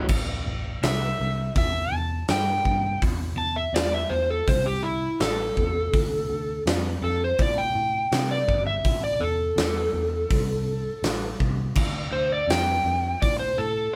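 Gritty and brooding, this 82 BPM blues rock and southern rock excerpt in A minor moves from Am through Dm7 and back, with an overdriven slide guitar carrying an up-front solo from 0.8 seconds in the E4 to A5 range. Beneath it, a dark, round, foam-muted picked electric bass holds the low end, while a big acoustic rock kit with a punchy kick, medium-tuned snare, hi-hat and crash cymbal sits forward in a natural, roomy sound. The trio plays live together in one room with moderate studio reverb, giving the short cut a raw, immediate feel.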